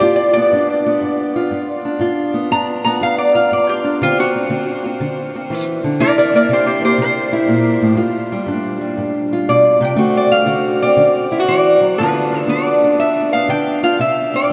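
Soaked in a huge, dreamy reverb with a seven-second tail, this short cut from a longer acoustic country blues piece has a gritty, swaggering mood and a swung 4/4 feel. Up front, a metallic, nasal lap resonator guitar, played with fingerpicks and a steel bar, carries the melody as a slide solo from the start until 12.0 seconds. Beside it, a dark, boxy parlour steel-string guitar fingerpicks the accompaniment through G7, D7 and C7 changes before the passage closes on C at 14.0 seconds.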